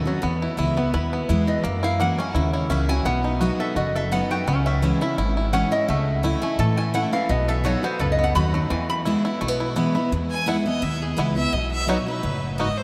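A nasal, metallic lap resonator guitar, played with a steel bar and fingerpicks, carries the melody in a lively, joyful bluegrass excerpt in E major at 170 BPM with a swung feel, soloing until about 10.1 seconds before a clear, biting fiddle with light vibrato takes over at 10.3 seconds. Beneath them, a bright, full-bodied picked dreadnought guitar picks out accompaniment, a twangy, percussive banjo plays arpeggios, and a woody, thumpy pizzicato upright bass sits up front on gut strings. The chords move from E through F#7, B, C#m and A/C# before returning to E, all bathed in a huge, wet reverb that places the band in a vast, echoing space.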